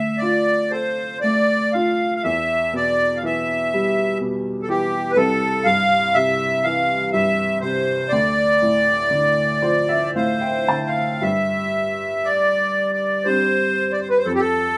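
Haunting and mournful, this Celtic slow air in D dorian drifts at a rubato 60 BPM in 3/4, an excerpt cut from a longer piece. A reedy, sweet, airy accordion with light tremolo tuning carries the melody up front, while a warm, woody, boxy upright piano with long sustain accompanies and adds a fill from 9.1 to 11.2 seconds. The pair play live together in a stone room with moderate reverb, and the harmony moves from Dm through Em and C, returns to Dm, then shifts to Gsus4 at 11.2 seconds before closing on a rootless Dm/F.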